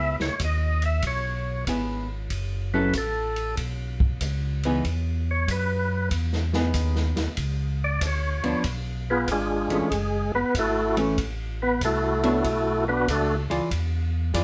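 Soul jazz organ trio in C# minor at 95 BPM with a greasy, swinging 4/4 feel, where a percussive tonewheel organ with key click and slow rotary speaker carries the melody until 13.4 seconds over a dark, hollow-body archtop guitar comping clean, a round organ bass with chorus vibrato, and a big-band drum kit with punchy kick and ride cymbal entering at 0.2 seconds, all set in a moderate studio room heard from further back in this excerpt cut from a longer piece.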